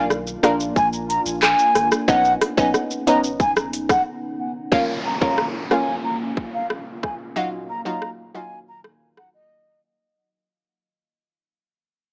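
A sultry, hypnotic dancehall groove in Eb minor moves at 91 BPM in a straight 4/4, driven by an electronic island pop drum kit of handclaps, hi-hat, tight kick, rim click and shaker, overdriven and up front with metallic hats. A breathy, mellow concert flute carries the melody from the start to 9.8 seconds, its vibrato and crisp attack treated with tape echo and rolled-off highs. Beneath it, a round, detuned analog pluck with chorus, a moving notch and sidechain pumping plays the accompaniment, while a deep, moody ambient pad with a warbling, vintage character holds sustained chords through chorus, built-in reverb and the same pumping. A punchy sine sub bass with a pitch-drop attack anchors the opening until 4.0 seconds, and after a brief break the second section fades out as an electronic downlifter enters at 4.8 seconds. The harmony shifts from Bb and Badd9 to Bbm and Ebmadd9, and the dry, gritty sound carries a cassette-tape, small-speaker quality in this cut from a longer piece.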